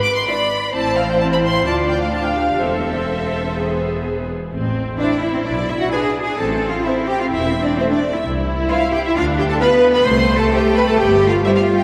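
In a straight four-four, this stormy, dramatic fragment of a classical-period movement for string orchestra sets a focused, lush violin melody over a dark, woody second violin line, with a smooth, even viola accompaniment entering at 0.3 s and a bass carried by close, prominent cellos and remote-sounding double basses, the whole ensemble bathed in a wet church reverb.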